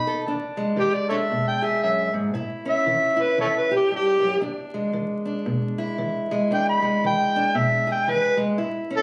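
A swinging 4/4 groove at 115 BPM drives this nine-second slice of acoustic country blues in E mixolydian, tuned slightly flat with A at 438 Hz, and the mood is swaggering and gritty. An amplified, overdriven harmonica carries the melody from start to finish, playing up front with tongue slaps, scooped notes and a jazz-inflected solo manner, its tone given a plate reverb. Beneath it, a fingerpicked steel-string parlour guitar supplies the accompaniment, also up front, with a dark, boxy character. The harmony moves from E7 to A7 at 2.3 seconds and back to E7 at 4.4 seconds. The whole duo sits in a moderate studio reverb, yet the sound has the feel of a phone held up in a club, with club reverb, vinyl crackle and compression adding to its rough, lived-in charm.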